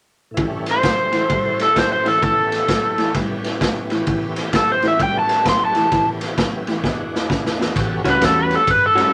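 An up-front, overdriven slide guitar played with fingerpicks carries the melody over a gritty, laid-back electric blues shuffle, with a slightly broken-up, lo-fi electric guitar riff and a punchy, saturated garage drum kit in a small room. A bright, shouting tonewheel organ with slow rotary speaker and chorus vibrato fills in the accompaniment. After a drum fill at 6.8 seconds, the slide guitar takes a solo from 7.8 seconds as a dark, round, foam-muted fingered bass joins briefly before this cut from a longer piece ends.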